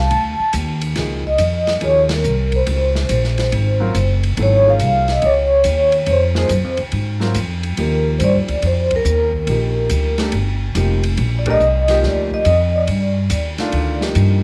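A studio ambience surrounds this short modal jazz excerpt, a hypnotic, searching passage in Db major swinging at 141 BPM in 4/4. The vibraphone, played with soft mallets, carries the melody from the start with a ringing, airy tone and a medium motor vibrato, sitting level with the upright bass. That bass is plucked, woody and up front, its steel strings giving a firm low line under the harmony. The open jazz drum kit stays further back, with dark cymbals, a medium-tuned snare and a boomy kick in a small-room sound, while the baby grand piano joins at 1.0 seconds with open, long-sustaining chords. The harmony settles on Dbmaj9 before shifting to Ebmaj9 at 7.8 seconds, and the full band hits accents at 2.0, 8.8 and 11.4 seconds.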